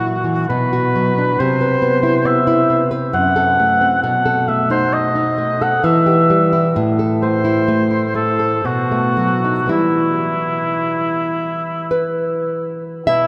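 A mellow oboe carries the melody from the first moment, its vibrato-tinged, roomy tone sitting up front in this romantic duo with classical guitar. The mood is elegiac and solemn, set in a slow triple metre with a freely breathing rubato. Beneath it, a dark nylon-string guitar supplies fingerpicked accompaniment in a classical style, and the small squeak of fingers on its strings can be heard. The harmony drifts through Bm, Cmaj7 and F#dim before settling on Em around 5.8 seconds, then passes through Am and B7 to return to Em near 9.7 seconds. Both instruments play together throughout, wrapped in a wet cathedral reverb that places them in a vast, echoing space, and the passage is cut from a longer piece, ending at 13.3 seconds.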